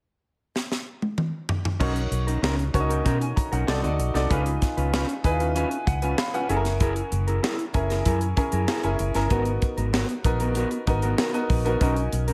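At 96 BPM in a straight 4/4, this polished 1980s jazz-funk pop excerpt opens with a tight funk drum kit playing a fill from 0.6 seconds, its bright cymbals, high-tuned snare and tight kick sitting dry and up front under a gated reverb. At 1.8 seconds the full band arrives on a Bmaj9 chord, with a vintage muted fingered electric bass holding down the low end in a dark, round, amped tone. A brilliant baby grand piano supplies the accompaniment with a subtle chorus and adds a fill from 4.9 to 6.8 seconds, while a mellow, clean electric guitar plays a dark fingered riff, also lightly chorused. The harmony moves through Cdim7, C#7, F#9 and G#m9 before settling back on Bmaj9, giving the passage a breezy, urban feel in B major. The mix carries a light small-room ambience, with some lossy compression artefacts audible in this section cut from a longer piece.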